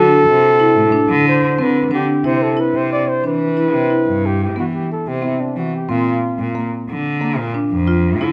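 Playful and hopeful, this short cut from a contemporary chamber piece moves in an uneven 11/8 at 181 BPM counted in eighths, with a mellow, up-front flugelhorn carrying a jazz-style solo melody full of scooped notes until 6.6 s, a close-miked, dry marimba struck with medium mallets spinning full-bodied arpeggios, and a single bowed cello laying down a rich, smooth bass line with vibrato, as the harmony moves to Cmaj7 at 2.2 s and Bb at 5.9 s inside a moderate recital hall reverb.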